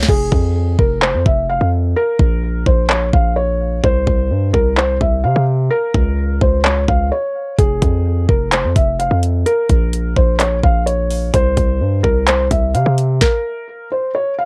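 A felt-muted upright piano, a distorted 808-style bass and a trap drum kit all start together in this melancholic, menacing half-time trap excerpt from a longer piece. The piano carries the melody in a soft, mellow, intimate voice, its thick felt and audible action noise coloured by cassette tape. Beneath it the 808 is heavy and aggressive, a sine tone with a noise layer, fast attack and decaying tail, while the kit brings a knocking kick, sharp snare and handclaps with a crash cymbal. The metallic hi-hats are held back until 7.6 seconds, just after a short break, and then join the electronic, produced drums, which share the cassette-tape colour. The chords cycle through Fm, Bbm, C5 and Db5. At 13.2 seconds the bass and drums stop, leaving the piano alone until the end at 14.5 seconds, all in a dry, close-up home cassette recording.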